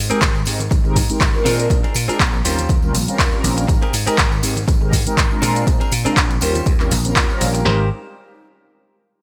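A bright, growly vintage slap bass opens this sunny, feel-good filtered disco house excerpt at 121 BPM in Ab major, joined by round, brassy synth brass with chorus and phaser, a clean direct-recorded electric guitar riff, an overdriven house kit of handclaps, hi-hat and shaker, soft-handed tambourine and congas in the background, and a punchy analog drum machine kick and snare, all pumping under sidechain except the drum machine as the chords cycle through Abmaj9, Bb9 and Eb13 in a light-reverb, 1980s-style digital sheen.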